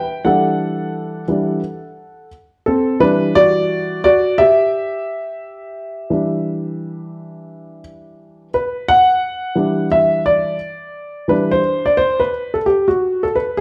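A dark upright piano opens alone on an Em11 chord, setting a nocturnal, smoky hip hop mood in E minor. The tempo sits at 87 BPM in 4/4 with a lazy swing on the sixteenths, giving the solo a relaxed, late-night sway. The piano sounds woody and intimate, placed up front, with the soft clatter of its action audible beneath the notes. Its playing spans from E3 to G5, and the performance moves into a new passage at 8.5 seconds before the clip ends at 13.6 seconds. A moderate reverb from a large studio wraps the instrument, capturing the feel of musicians playing live together in one room. This brief piece is cut from a longer work.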